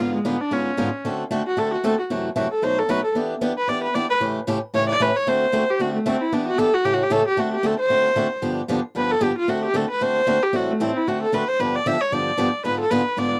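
Playful and lively, this short jazz excerpt swings at 228 BPM in D mixolydian, with a clear, airy-bowed viola carrying the melody as a solo from 0.0 s across two matching passages, its earthy, boxy tone sitting up front. Beneath it, a bright picked acoustic guitar with fresh-sounding strings provides swing accompaniment, moving through chords such as G#dim7, D7, Em7 and A7. The dry, close 1970s-style studio sound carries light reverb, and the piece is cut from a longer performance.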